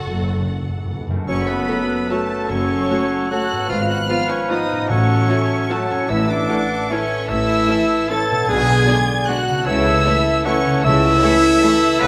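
A distant, lush violin section carries the melody high above the orchestra in this elegant, sweeping ballroom waltz, which moves in an unevenly lilting three with generous rubato and is cut from a longer piece. Round, soft-mallet timpani open with a fill that runs to 1.3 seconds, over a very quiet, portamento-tinged second violin line, smooth violas, a ringing harp playing arpeggios, and a foundation of expressive cellos and clear double basses. At 1.3 seconds the winds and brass join: a pure, very quiet flute ensemble and a close-miked cor anglais weave second lines, a mellow bassoon accompanies, and a dark horn section holds sustained chords. A bright, roomy trumpet adds stabs. At 1.7 seconds a vintage-toned clarinet adds its own second line, and a punchy trombone section enters to sit very quietly beneath the horns. The harmony moves from minor chords through diminished colours toward a major resolution, and the whole ensemble sits in the wet reverb of a scoring stage.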